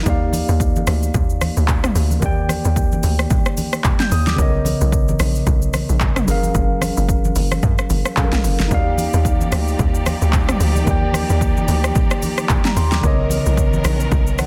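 A swung 4/4 groove at 111 BPM drives this relaxed amapiano excerpt in Eb major, built on an overdriven deep house drum kit with a punchy kick, fat snare, handclaps, hi-hat, rim click, shaker and toms sitting up front. A tight, percussive log drum bass carries the low end with a fast attack and decaying FM tone edged by a noise layer. Clean tine electric piano chords play throughout as accompaniment, while low-tuned congas ring from the background with hard hands. At 8.7 seconds a lush studio string section arrives with bowed, sustained chords full of vibrato and portamento, their smooth top pumping against the sidechain. The harmony moves through rich major-ninth chords, Ebmaj9 to Bmaj9 and Gbmaj9 and back, all wrapped in digital ambience and a dense, heavily limited modern master.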